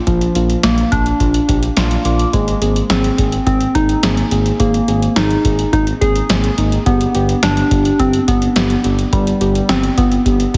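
Synth-pop at 106 BPM in a straight 4/4, this short excerpt carries a cool, melancholic mood over a chord movement from Bb to Abadd9 at 2.3 seconds and on to G at 6.9 seconds. A soft, round FM-style synth lead carries the melody, its gentle, keys-like tone warbling with a vintage character through chorus and analog delay. Beneath it, muted felt-like synth keys provide a dark, intimate accompaniment colored by chorus and phaser, adding a brief fill between 1.5 and 2.3 seconds. A smooth, mellow synth bass holds down the low end, while an electro analog drum machine sits up front with a deep kick, punchy snare and metallic hi-hats that sound re-recorded in a large room. The whole mix is bathed in a lush hall reverb and squeezed into a heavily compressed, radio-ready sound.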